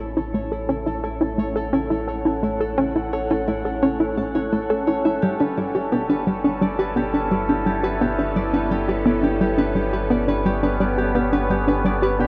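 Expansive and cosmic, this ambient, sequencer-driven space music drifts at 86 BPM in a straight 4/4, set in G lydian and cut from a longer piece. A hollow, bouncy square-wave pluck sits up front with a riff, its detuned, wave-folded tone given a fast attack and short decay and softened by chorus and tape echo. Alongside it, an evolving wavetable pad, also up front, holds sustained chords, its bright, morphing sound treated with phaser and its own reverb, while a mellow concert harp rings out fingerpicked arpeggios through tape echo. A deep, round sub bass anchors the low end with tube saturation, and the harp, pad and bass all fade in across the full 12.3 seconds. The harmony moves from A to G at 5.2 seconds, and the whole recording is bathed in a huge, wet reverb and the worn, warbling pitch drift of old cassette tape.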